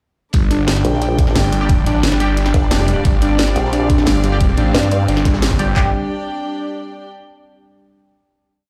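Mechanical and tense, this short, complete piece of dark technical drum and bass runs at 177 BPM in a straight 4/4, bursting straight into a drop at 0.3 seconds. Up front, an overdriven electronic kit hits a knocking broken-beat kick with claps, while a second electronic kit adds a cracking snare and tight closed and half-open hats, and a very quiet, gritty acoustic breakbeat loop with a high-tuned snare and a rolled-off top sits underneath. Two basses drive the low end: a thick, swirling detuned saw bass with phaser and tube saturation plays chopped phrases, and from 0.8 seconds a nasal vowel-sweep wobble bass with chorus answers it with modulated phrases of changing wobble speed. In the background, a bright, evolving resonant pad holds sustained chords with filter swells and sidechain pumping, and a soft, round pluck repeats an eight-step arpeggio through chorus and delay. Sparse, band-passed power-chord stabs echo from 1.6 seconds, and a dark, intimate chamber string section bowing sul tasto with light vibrato shifts slowly beneath everything before carrying the final chord alone until 7.1 seconds, all heard in a bare stone room on a big sound system with light reverb.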